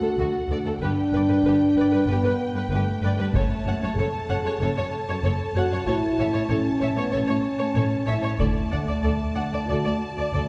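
A dark French horn section sits up front in this epic, relentless orchestral film-score cue, holding sustained chords in a classical style across the whole passage. Beneath it, a rich, distant cello section and a woody double bass section, entering at 0.2 seconds, carry the low end with lush bowed vibrato. A close viola section supplies an expressive accompaniment with a soft attack and portamento, while a smooth, even violin section plays a second line and a shadowy, close studio violin section carries the melody high above. A taiko ensemble strikes with heavy sticks in two bursts, from 3.3 and from 8.4 seconds, its acoustic sound caught in a small room. The harmony moves from D through G, F#m and A before returning to D, and the whole ensemble is heard from further back in a reverberant concert hall with a softened top end, as a fragment cut from a longer piece.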